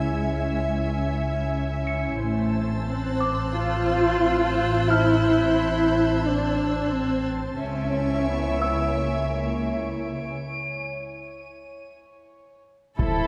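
A dark, veiled concert-hall sound frames this tense, uneasy cinematic suspense cue at 89 BPM, where con sordino studio violins carry a lush melody over a calm, organ-like pad with ensemble chorus, muted chamber cellos and up-front double basses moving between C#m and Am. A tinkling, slightly out-of-tune music box hovers above until a break at 10.3 seconds, while a high chamber violin texture enters at 2.2 seconds and carries on through the break, which gives way at 13.0 seconds to a huge impact, background taiko, a distant second violin line and close violas.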